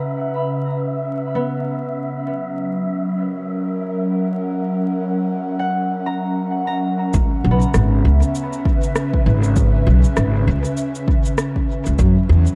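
Ambient dub at 99 BPM in C# dorian with a swung sixteenth feel, spacious and hazy, cut from a longer piece and set in light reverb with vinyl crackle. A breathy, chorused pad holds sustained chords on C#m7 and F# while a ringing fingerpicked concert harp plays arpeggios through dub echo and a dark wind-like noise texture hovers on E5, with a filter sweep on an analog synth pad until 7.1 s. At 7.1 s a woody pizzicato upright bass, an overdriven punchy electronic kick and echoed electronic cabasa and rim click enter, and the passage closes on an F#5 chord at 12.0 s.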